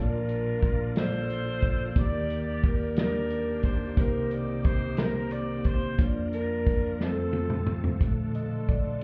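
A mellow, clean tine electric piano carries this jubilant yet reverent slow gospel fragment in Bb major at 60 BPM in 6/8, joined by a punchy, up-front country drum kit from 0.3 seconds, a soft-attack saxophone section singing the melody with vibrato and tape echo, and a shouting, lightly overdriven tonewheel organ with fast rotary speaker and chorus vibrato holding chords in the background, until a drum fill at 7.0 seconds leads to a brief electric piano solo at 8.0 seconds over reedy, gut-toned bowed strings, all heard muffled as if through a wall in a club-like room.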